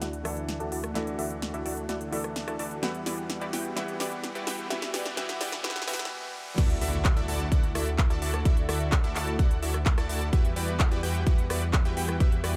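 Triumphant and euphoric, this festival progressive house excerpt at 128 BPM in D major builds for its first 6.6 seconds with a filter-swept, bright supersaw stab riff, an intimate concert grand piano in the background, a lush pad with chorus, a thick detuned saw bass, an overdriven big-room drum kit with crisp hats and a drum fill, and a very quiet riser and impact, then drops at 6.6 seconds as the piano falls away and a punchy, tape-warm electronic kick enters up front while all the synth parts pump to the sidechain over Dadd9 and Emadd9 chords.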